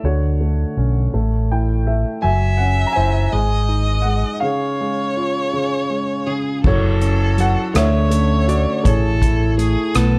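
A worn, up-front baby grand piano carries the melody of this melancholic, heartbroken acoustic folk-pop ballad in 6/8, over a round, amped fretless bass with ensemble chorus. A clear, distant violin joins at 2.2 seconds with a focused, bowed second line. At 6.6 seconds a mellow vibraphone adds ringing arpeggios with slapback echo, and a soft-mallet drum kit brings a boomy kick, hi-hat, rim click and crash; the production is dark and lightly reverberant, cut from a longer piece.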